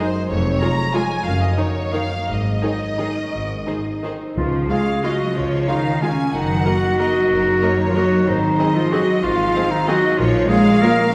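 Lush bowed violin sections, one carrying a soft-edged vibrato melody and the other a focused second line, open this elegant, sweeping orchestral ballroom waltz in a rubato 3/4 over a warm viola accompaniment in the background and ringing, bright fingerpicked harp arpeggios, with clear cellos and smooth, distant double basses soon supplying the bass, until at 4.4 seconds an up-front solo clarinet adds its own second line and round, very quiet timpani give a brief soft-mallet touch, all heard from further back in a reverberant scoring stage in this short cut from a longer piece.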